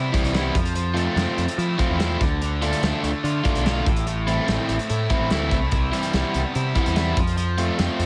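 Indie rock with an upbeat, carefree mood, this short cut from a longer piece moves at 145 BPM in a straight 4/4. A cranked stack guitar plays a bright, overdriven riff soaked in lush chorus and tape echo, while a second, crunchy overdriven guitar sits up front with a warmer picked riff from 0.1 seconds. Underneath, a modern picked electric bass adds a direct, bright low end, and a loose acoustic drum kit with a punchy kick, medium-tuned snare and hi-hat drives things from 0.1 seconds. The chords cycle through Cmaj7, Fmaj7, Dm and Am before returning to Cmaj7 and landing on F. Light reverb and small room ambience give the whole band an intimate, live-in-the-room feel.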